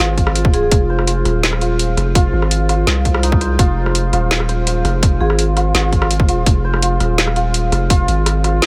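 Spacious and tense, this half-time drum and bass excerpt sets shimmering santur arpeggios with tape echo over a dark, detuned analog pad pumping in the background, a deep sine 808-style bass, an up-front hard-clipped electronic kick, and a layered kit of woody snare, rim click and metallic hats in a small room, while a very quiet vibraphone touches a single note at 0.5 and 5.2 seconds.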